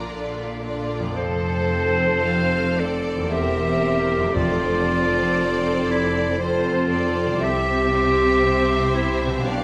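Classical music, a serene and lyrical slow romantic movement for symphony orchestra in F major, moving in a rubato 3/4 at around 53-60 BPM, heard as a short section cut from a longer piece. Two bowed violin sections carry the melody and a second line with lush vibrato, the melody sitting distant in the background, over a viola section's intense accompaniment, a ringing fingerpicked concert harp playing arpeggios, and cello and double bass sections sharing the bass. A bright, soft-attacked clarinet with a vintage tone enters up front at 1.2 seconds with a second line, very quiet round timpani on calf heads touch in between 4.4 and 5.9 seconds, and the whole orchestra sits in a wet scoring-stage reverb.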